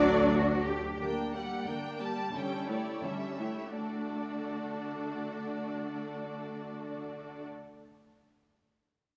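Cheerful and lively, this short cut from a quick classical-period movement for symphony orchestra moves in a straight 2/4 at around 81-91 BPM in D major, easing into a slowdown between 0.3 and 3.8 seconds. A rich, smooth bowed violin section carries the melody high in the range, while a second, focused violin section plays a lower supporting line, both sounding somewhat distant. The viola section sits up front with an expressive, warm accompaniment, and the cello section supplies a lush bass with a smooth top. A clear double bass section sounds a single low D only for the opening 0.8 seconds. The harmony moves from D through Gm/D and A7/D before returning to D at 3.8 seconds, and a wet scoring-stage reverb with a 1.9-second decay gives the vibrato-rich strings a spacious bloom.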